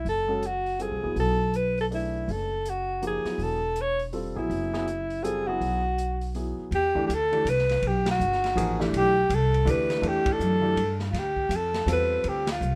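Cool and hypnotic, this modal jazz excerpt moves at 162 BPM in a swung 3/4, starting in B dorian over a B7sus4 and shifting to E phrygian at 6.7 s, where the harmony settles on Em7 before turning to Dm9. A breathy alto saxophone carries the melody up front, its clear subtone colored by a light vibrato in a solo jazz style. Beneath it, a pizzicato upright bass with gut strings sits close and thumpy, giving a woody pulse in its low register. A baby grand piano accompanies with an intimate, natural tone, its action noise audible, while an acoustic drum kit in a small room keeps hi-hat, kick, ride and snare subdued, with dark cymbals and a punchy kick. Band accents land at 8.0, 10.2 and 12.4 s across the second section, and light reverb lends the group a gentle sense of space.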